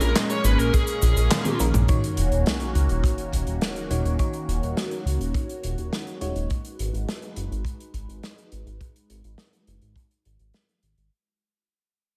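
A straight 4/4 pulse at 104 BPM drives this cinematic, nocturnal synthwave fragment in Eb minor, where a punchy, up-front acoustic kick and a polished, airy kit of snare, hi-hat, toms, cabasa and handclaps in gated reverb play a fill leading to 1.9 s, when a background sub drop lands as an impact, a filter sweep begins on the swirling, detuned sawtooth pad, and the mix starts to fade out over a dark, glossy, pumping pulse-width synth bass, while a distorted, picked bluesy lead guitar offers a brief melody at the very start and a lush, dreamy FM electric piano with a soft pad layer adds chorused, phased stabs over Bbm7 and Ebm7 until 6.5 s, when the harmony moves to Abm7.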